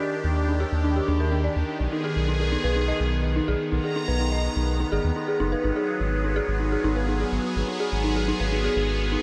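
The excerpt opens on a swirling, detuned analog pad holding sustained chords through phaser and chorus, alongside a dark, eerie FM synth bell spinning inharmonic arpeggios with chorus, tremolo and diffuse ambient delay, before a round, deep analog bass enters at 0.2 seconds beneath the Ebmaj7, B6 and Abm7 harmony of this wistful, playful IDM passage at 125 BPM in straight 4/4, all set in a dreamy mix soaked in a huge ambient reverb.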